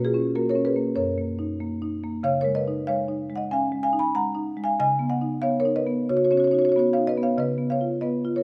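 Rubato in 4/4 at about 94 BPM, this flowing, playful contemporary classical excerpt for solo marimba played with medium mallets sits in B Lydian, tuned to A4 = 436 Hz, and moves through Bsus2, F#6, C#add9 and C#7 chords, its woody rosewood bars ranging from F#2 to B5 and placed up front in a moderate recital-hall reverb across the 8.4 seconds.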